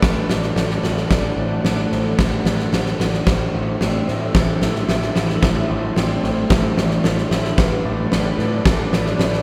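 This brooding, melancholic post-rock passage in A dorian at 111 BPM opens with the full band together: a huge arena drum kit sits up front with a fat snare and punchy kick in a pumping room, alongside a growling, overdriven picked electric bass. In the background, a twangy, slightly broken-up electric guitar through a small old amp with spring reverb and a mellow, ringing soft-mallet vibraphone play arpeggios. A lush, detuned sawtooth pad with chorus holds sustained chords moving from Bm/A through D/A to Am, all set in the moderate reverb of a church or concert hall.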